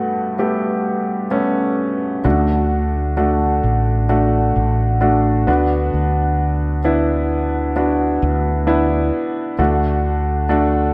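In a straight, unhurried 4/4, this tender and hopeful pop ballad fragment opens on a clear, intimate grand piano whose action noise is audible and whose notes ring with long sustain, before a round, dark fretless electric bass touched with ensemble chorus enters up front at 2.2 seconds, the two moving through Gadd9, D and Bm/D inside a dreamy, reverb-soaked hall.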